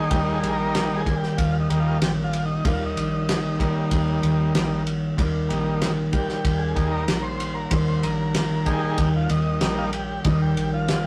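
A steady, straight four-beat pulse drives this trippy, hypnotic slice of psychedelic rock, cut from a longer piece and resting on a single Eb chord throughout. The cloth-damped drum kit sits up front with a thuddy, tight kick, a fat snare and dark ride cymbal, its rolled-off top giving the small-room sound a muffled weight. Underneath, a fingered electric bass holds the low end with a round, foam-muted tone, while a mellow, clean electric guitar plays a compressed, fingered riff. Over them, a vintage overdriven combo organ takes a solo from start to finish, with buzzy, sustained chords carrying heavy vibrato. Light reverb and tube saturation give the whole take the rough feel of a rehearsal-room recording.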